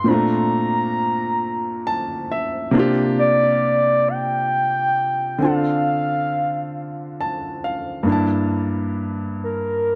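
R&B in G dorian at a slow 45 BPM in a straight 6/8, this late-night, yearning excerpt pairs a smooth, gliding portamento lead, sine-like and softly attacked with chorus, phaser and vibrato, against an up-front, natural baby grand piano that adds fills at 1.4 and 6.7 seconds over Bbmaj7, C9sus4 and Dm7 before the lead takes a solo from 8.1 seconds over Gm69, all in light studio reverb.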